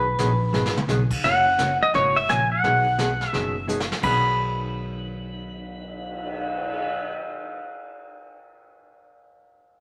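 A clean, up-front pedal steel guitar opens this playful, cheerful western swing clip, with a dark hollow-body jazz guitar and a woody, thumpy upright bass on gut strings sounding beneath it. The pedal steel carries the melody, played with fingerpicks and slide, and its volume swells give the tune a glowing, buoyant character. The brush drum kit joins at 0.2 seconds with airy, polished brushed snare, punchy kick, dark cymbals and toms, and adds short fills at 0.5 and 3.7 seconds. The picked jazz guitar comps through an easygoing swing progression from B6 to F#7 and back, while the bass plucks a low, rounded foundation. The small band sits in a lush studio reverb that gives the brief passage a lively, sociable sheen before it breaks off.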